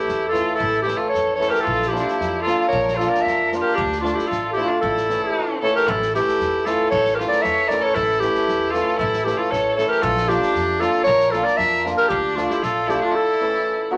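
A straight 2/4 pulse at 115 BPM drives this fiery, restless Balkan wedding-band piece in A phrygian dominant, a short cut from a longer performance. Up front, a close-miked clarinet in classical style carries the melody with a clear, solo voice. Beneath it a single bowed violin plays a second line, biting and nasal with vibrato and a smooth top. The hammered dulcimer fills out the accompaniment with a shimmering, ringing sound, while a woody pizzicato upright bass and a natural small-room drum kit, with punchy kick and medium-tuned snare sitting in the background, both drop out just before the end at about 13 seconds. The harmony cycles through A, Bb and Dm back to A across two matching passages, the second starting near 5.9 seconds, all set in a moderate studio ambience.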